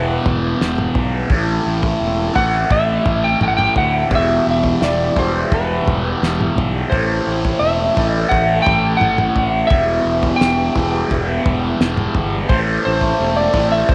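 Psychedelic rock at 86 BPM in A minor, mysterious and hypnotic, with a dark slide guitar carrying the melody through tape echo over a bright, double-tracked fuzz guitar riff with phaser, a round, overdriven fingered bass and a very quiet, shimmering string machine holding violin chords, while a cloth-damped, thuddy drum kit with a fat snare enters at 0.3 s, set in a moderate spring reverb as the harmony moves between Em and Am7 in this cut from a longer piece.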